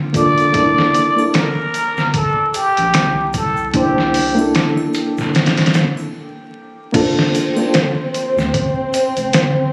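A raspy, growling plunger-muted trumpet carries the jazz-style melody up front from 0.2 s to 4.5 s in this smoky, brooding trip hop excerpt at 75 BPM in G dorian, swung on the sixteenths over Gm7 and C13. Beneath it, a reedy electric piano with tremolo, tape echo and a filter sweep plays accompaniment, a round analog bass sits deep and dark, and a compressed, pitched-down, muffled sampler kit with a thumpy kick pushes up front, while a tube shaker and triangle stay faint in the background. After a brief stop, a lush, woody violin section enters with sustained bowed chords at 7.0 s, and the recording carries club reverb, vinyl crackle and the sound of a phone capturing the room.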